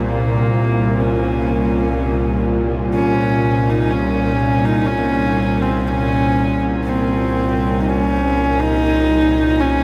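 A huge, wet reverb surrounds this short ambient excerpt, lending the dark, ominous mood a cavernous depth. From the opening, a horsehead fiddle carries the melody, its husky, earthy horsehair tone marked by light vibrato and portamento and set up front within a diffuse ambient delay. Beneath it, a bowed-like synth drone holds low and sustained, its sawtooth timbre tense, detuned and bright, with a slow attack, long release, vibrato and its own built-in reverb. The harmony rests on a single C chord, and the pulse stays straight and unhurried. At 9.0 seconds a detuned synth bell slips in with eerie, inharmonic FM arpeggios, mellow and chorused but barely audible, just before the fragment cuts off at 9.8 seconds.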